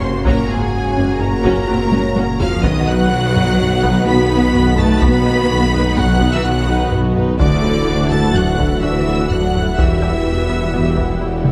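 Lush, distant violins carry the melody and a second line over close, dry taiko drums (with a fill at 1.9 s) in this relentless, futuristic hybrid orchestral and electronic film cue at 126 BPM in 5/4, where focused violas accompany while expressive cellos, double basses and a roomy tuba thicken the low end beside a swirling, phased detuned saw bass. A very quiet, dark French horn section and a shimmering, retro pulse-width pad hold sustained chords, a tight sequenced synth drives mellow arpeggios, and a huge, bright reverse cymbal sounds faintly at 11.4 s, all in a moderate scoring-stage reverb.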